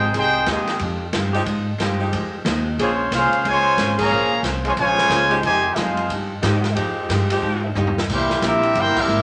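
A warm trumpet section carries the melody up front with light vibrato, dropping out briefly at 0.8 seconds before returning, while a smooth-topped trombone section plays a second line and a close-miked saxophone section holds soft-attack chords until 7.7 seconds in this sultry, swinging big band excerpt in F minor at 181 BPM. Beneath them, a woody, thumpy pizzicato upright bass and a boxy, picked ladder-braced acoustic guitar keep time, and a polished, airy drum kit with dark cymbals and a punchy kick swings the eighth notes, adding a fill at 7.8 seconds. The band hits accents at 3.9 and 8.9 seconds over chords moving from Fm9 to Bbm9, back to Fm9 and on to C7, all set in a wet club reverb.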